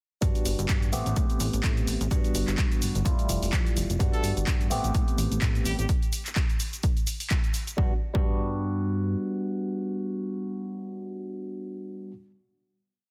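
Dense and heavily limited, this modern master sits in a digital ambience for a short, feel-good piece of filtered disco house with a funky, swung sixteenth-note groove. An up-front electronic kick thumps four-on-the-floor, and a tape-warm analog drum machine supplies programmed closed and half-open hats, cabasa and a clap backbeat, with sidechain pumping on its hats and percussion. A plucky, octave-jumping analog bass mixes sawtooth, square and triangle tones with ring modulation and tube saturation, its fast-attack filter pluck decaying and pumping under the sidechain. A barky, clean tine electric piano with a phaser holds close-voiced chords with syncopated pushes and pumps under the sidechain as well. A tight horn section enters at 4.1 seconds with short, vibrato-laced pop answering phrases in octave doubling. The drum machine stops at 7.8 seconds and the kick at 8.3, the bass follows at 9.2, and the electric piano then rings on alone, holding the final chord until 12.1 seconds.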